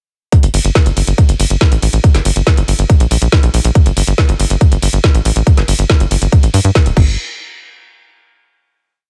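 The kick and kit arrive together at 0.3 seconds, plunging straight into a driving, alien psychedelic trance drop at 140 BPM in G minor. A tight, up-front electronic kick pounds four on the floor while a programmed kit adds a woody snare backbeat, metallic hats, ride and crash, joined by a punchy sequencer bass whose sawtooth and square-wave plucks roll in sixteenth notes from D1 to G2. The dry, close sound keeps the drop lean until 7.2 seconds, when a final hit rings out to close this short piece.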